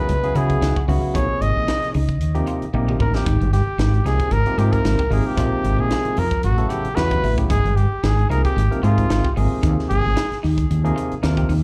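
Funky and bright, this short electric jazz fusion excerpt at 113 BPM in Ab major, with a light swing on the 16ths, puts a breathy, mellow solo trumpet melody with vibrato and scooped notes on top, carried on slapback echo and analog delay, over a barky tine electric piano, a woody, round fretless bass sitting up front with subtle chorus, a crisp fusion drum kit with a high-tuned snare and punchy kick that throws in a fill at 2.7 seconds, and clean, picked semi-hollow guitar stabs tucked in the background with lush chorus, captured at a live club gig through the venue's PA.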